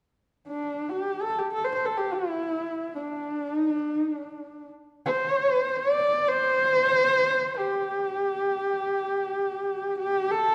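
Vast and galloping, this excerpt of Mongolian traditional music unfolds in free time in the G zhi mode, with a lone horsehead fiddle entering at 0.5 s and carrying the excerpt until 10.5 s. Bowed on horsehair strings by a single player, the fiddle sounds husky and expressive, singing between D4 and D5 with vibrato and sliding portamento, and it sits up front in the mix. A dark production and a scoring-stage reverb with a 1.5-second tail give the instrument a sense of open space around it.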